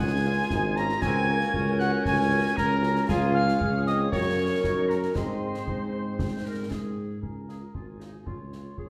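A soft-attacked, up-front tuba anchors this rousing, festive military-style march for wind band in Db major, moving at a straight 116 BPM in 2/4 while a mellow, distant cornet carries the melody with vibrato. A pure, bright wooden piccolo adds a tongued second line until 6.7 s. A background woodwind section also plays a second line, the French horns accompany, and a clear, tight trombone section sustains chords until 6.9 s. Snare, bass drum and dark clash cymbals join at 0.5 s, and the whole short cut sits in a wet recital-hall reverb.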